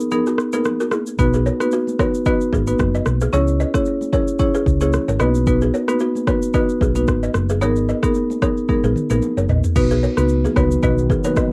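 Afrobeats with a joyful, sunny lift, this home-recorded cassette excerpt opens on a break of up-front marimba, woody and rosewood-toned, over a produced electronic afro-pop kit with a deep kick, rim clicks, shaker, toms and crash, while very quiet ringing, high-tuned congas join in. A buzzing, boxy balafon riff with tape grit and analog delay enters almost at once. At 1.2 seconds a round, punchy hollow-body bass joins, and after a drum fill a moody detuned sawtooth pad slips in very quietly at 10.5 seconds.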